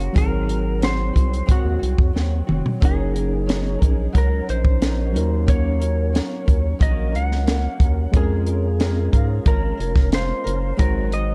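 Nostalgic and sunny, this indie and bedroom pop excerpt in Gb lydian moves at a straight 90 BPM, with a bright, twangy lap steel carrying the slide melody through lush chorus and analog delay, a fingerpicked flamenco guitar with audible finger squeak shimmering under ensemble chorus and vibrato, a reedy, worn, slightly out-of-tune electric piano tucked in the background with a cassette-tape haze, a deep, round analog bass sitting up front, and a dry compact cocktail kit with a punchy kick and high-tuned snare that plays a short fill at 2.1 seconds, all set in a small room.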